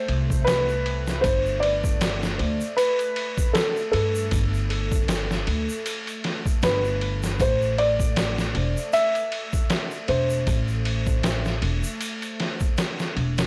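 A soft, felt-muted upright piano carries the melody over a tense, detuned bowed-like drone sitting in the background, opening this smoky, dark trip hop excerpt at 78 BPM with a light 16th-note swing, the piano's dub echo trailing its intimate phrases until it stops at 11.6 s. A woody, pizzicato upright bass and a compressed, pitched-down sampler-style kit with a thumpy kick, snare and ride sit up front, while a distant egg shaker and group handclap rest far back in a large room. The harmony moves from Am to G and back to Am, all framed by a dry, gritty hardware sound with a cassette tape character and studio reverb.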